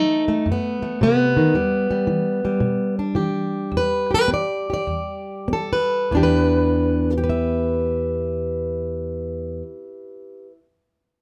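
Brooding and mournful, this short excerpt from a longer piece is acoustic country blues in E minor, set in 4/4 with a swung eighth-note feel and a tempo that moves between 94 and 112 BPM. A single fingerpicked, plugged-in steel-string jumbo acoustic guitar carries everything as a solo, sitting up front with a warm, full-bodied tone and spanning from E2 to E5. It opens on a B7 chord before settling onto Em7 at 1.5 seconds, and the pace slows from there until 6.1 seconds, where the music moves from its opening section into a second one. The guitar stops at 10.6 seconds. A moderate studio ambience gives the dark, warm production a modest sense of space.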